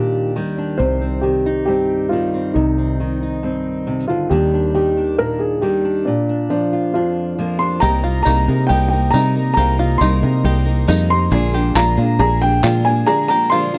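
A straight 4/4 pulse at 137 BPM drives this anthemic, uplifting indie folk excerpt, where a dark, woody, slightly detuned upright piano carries the melody up front over a fingerpicked steel-string acoustic guitar with finger squeak and a growly, punchy fingered electric bass that enters at 0.8 s; at 7.8 s the arrangement builds as the fingerpicked guitar gives way to a bright, full-bodied picked dreadnought guitar, joined by a boxy, short-sustain upright piano in the background and plunky open-back banjo arpeggios, with a jingly tambourine following at 8.3 s and hollow group handclaps arriving at 11.8 s, set in a dry, close 1970s-style studio sound.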